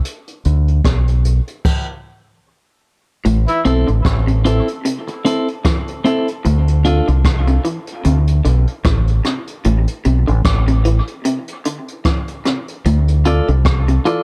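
Spacious and deep, this swung dub reggae excerpt in A minor at 75 BPM opens with a break of brushed jazz kit, boomy kick, dark cymbals and rim clicks over a round, punchy fingered bass, with a stop at 1.6 seconds before a slightly broken-up, lo-fi guitar through a small old amp enters at 3.2 seconds with echoing arpeggios, a brief punchy horn section line and a twangy, compressed, low-pass-filtered clean guitar adding dub-echoed accompaniment in a studio room.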